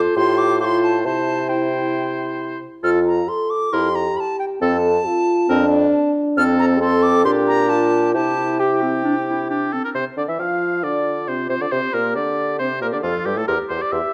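Set in a recital hall with moderate reverb, this excerpt has a dark, warm production that wraps a quick, cheerful classical-period movement for wind quintet at 136 BPM in 4/4 and F major. A bright, wooden-toned flute carries the lively melody with a pure sound, soft attack and vibrato, while the clear oboe sings a second line with light vibrato. The smooth-topped clarinet and mellow French horn fill in the accompaniment, and the bassoon sits up front on the bass line. All five parts play in a poised classical style from the opening moments, with the flute and bassoon joining at 0.2 seconds. The harmony circles around F with touches of Fmaj9 and F6 before leaning toward Gm and C, and a new section begins at 10.0 seconds that moves through Gm7 to C/E as the passage breaks off.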